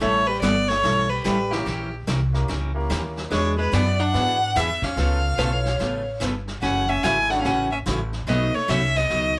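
A rich, lightly vibrato fiddle carries the melody up front from the start of this swinging, down-home western swing cut at 145 BPM, over a dark, hollow-body archtop guitar second line, a bright picked acoustic guitar, a woody, thumpy gut-string upright bass and a warm vintage brush kit, as a brilliant upright piano joins at 1.5 seconds and a clean, fingerpicked lap steel slides in with volume swells at 5.4 seconds, all in a small live room over chords moving from A9 through E9 and F#m7 to B9.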